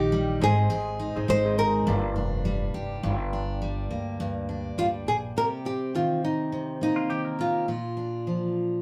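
A small, fingerpicked nylon-string guitar carries the tender, wistful melody of this acoustic pop fragment, over a full-bodied, up-front jumbo steel-string guitar with audible finger squeak, a brilliant, polished concert grand that sits in the background until 3.0 s, and a woody, thumpy pizzicato upright bass on gut strings that drops out at 5.3 s, while a clean, compressed pedal steel guitar slides in with fingerpicked volume swells at 7.0 s, all in a lightly swung feel within the wet ambience of a band playing live in one room.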